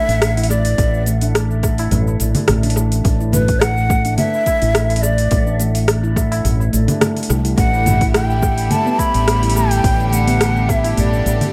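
A breathy ney carries the melody from the very start, its close-miked, end-blown reed cane tone showing vibrato and a crisp attack, trailed by dub echo. Beneath it a handpan plays ringing stainless-steel arpeggios, also soaked in dub echo, while a round, punchy fretless electric bass sits up front with ensemble chorus and sidechain pumping. The rhythm comes from an overdriven deep house kit of cabasa, congas, metallic hi-hat and rim click with tape echo, joined by a layered electronic kick with a deep, overdriven thump and a high-tuned, compressed tabla tucked in the background. At 7.6 seconds a bright, earthy chamber string section enters with sustained bowed chords on Em9/A, shaped by sidechain pumping. This organic downtempo fragment, cut from a longer piece, has a warm, meditative mood, set in a small room with light reverb and an echo-heavy mix.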